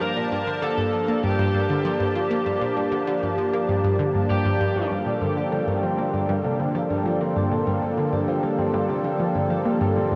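A lush, detuned unison pad holding a Gm7 chord under chorus, a round, nasal analog pluck riff with phaser and tape echo, and a dark, overdriven lead guitar all open this cosmic, mysterious ambient space-music excerpt at 98 BPM in G minor. The guitar plays a brief lo-fi melody until 4.9 s, when a mellow, ringing concert harp takes over with echoing arpeggios, all sunk in a huge reverb and the warbling pitch drift of worn cassette tape.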